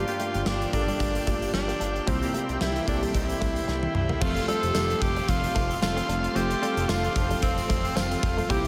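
A raspy, forceful tenor saxophone carries the melody up front in this uplifting, romantic 1980s-style pop piece at 112 BPM in F major, over glossy chorused retro synth keys, a mellow organ-like ensemble string pad, a faint twangy clean electric guitar riff, a fat detuned analog bass and a punchy gated 80s drum kit with bright cymbals whose fill at 3.7 s leads into a new section where a very quiet overdriven semi-hollow guitar joins at 4.2 s, all soaked in a dreamy, huge ambient reverb.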